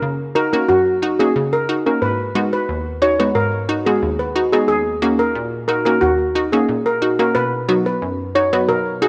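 Sunny and bouncy, this short dancehall fragment, cut from a longer piece, moves at 90 BPM in a straight 4/4. An analog pluck carries the accompaniment from the start, its round, detuned sawtooth-and-square tone given a fast attack, a decaying filter pluck, a touch of noise and a chorus sheen that keeps it bright and up front. At 0.4 seconds a steel pan enters with the melody, its metallic, shimmering lead voice struck with medium rubber sticks and trailed by a digital delay. The harmony moves through F#6, G#m7, D#m7 and B over the 9.1 seconds. A moderate plate reverb opens up the space, while a worn cassette-tape character adds a warbling pitch drift to the whole sound.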